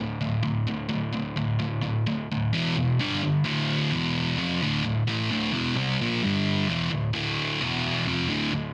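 The recording is dense and heavily limited, with a moderate studio reverb giving the sound a sense of room. This short rock clip, cut from a longer piece, carries a heavy, aggressive mood in a straight 4/4 feel. A sludgy, distorted electric guitar plays alone from start to finish, picked and double-tracked, sitting up front with an overdriven tone and a touch of warmth. It works through power chords on D, E and G, settling onto D minor chords at 4.4 and 8.1 seconds. A shift into a second section at 3.5 seconds cycles back through these chords.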